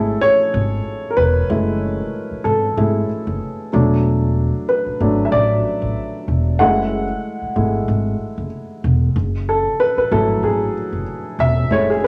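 An upright piano and a pizzicato upright bass open this smooth, soulful neo-soul R&B excerpt at 94 BPM in F# minor, with a lightly swung 16th feel over F#m9, E9sus4 and back to F#m9. The intimate piano, whose audible action noise and cassette-tape colour sit up front, carries the solo through the whole passage, shifting into a new section at 9.1 seconds. Beneath it, the woody, steel-strung bass stays low and close in a small, lightly reverberant room that gives the home recording a warm, natural feel.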